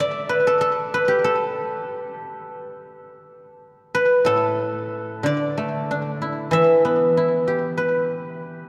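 A solo guzheng, plucked with fingerpicks and sitting up front, opens this short cut from a longer piece of traditional Chinese music, its silvery, ringing tone spanning A2 to E5 in the A shang mode. The mood is pastoral and elegant, moving freely in rubato around 84-98 BPM in 4/4, with a new section arriving at 3.9 seconds. A slapback echo on the guzheng and a wet cathedral reverb place the instrument in a vast, echoing space.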